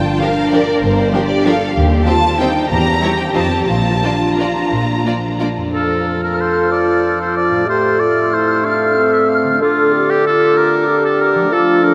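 This festive, elegant orchestral ballroom waltz excerpt opens with a lush violin section carrying the melody over a ringing concert harp, dark, woody cellos and a clear, distant double bass section. A second violin line and the violas sit very quietly beneath them. The 3/4 pulse moves with a rubato feel between 166 and 205 BPM, starting in Bb major and passing through Gm7, Edim7 and F7 before arriving on Bb. At 5.7 s the music turns to F major, and the woodwinds take over: an up-front oboe with a soft attack, a smooth-topped bassoon, a close-miked clarinet and an airy flute section in the background, while the harp continues its arpeggios. A mellow French horn section enters with sustained chords at 6.1 s as the harmony moves through F/A to Dm. A huge, wet reverb places the orchestra in a vast, echoing space.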